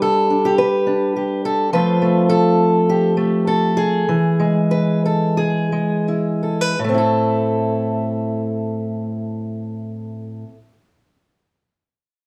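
A fingerpicked acoustic archtop guitar opens alone on a G chord, its warm, up-front tone carrying a melancholic, reflective folk mood in A minor. Moving in a straight 4/4 at roughly 81 to 105 BPM, the playing spans from A2 up to B4 as the harmony shifts to Fadd9 at 1.7 seconds and then to E. Across that stretch, from 1.7 to 6.8 seconds, the tempo slows down, lending the phrase a thoughtful, lingering quality. At 6.8 seconds the music settles onto A minor as a new section begins. Finger squeak adds an intimate, human detail, and a moderate large-studio reverb gives the guitar a sense of space. The recording is cut from a longer piece, and the guitar plays until 10.6 seconds.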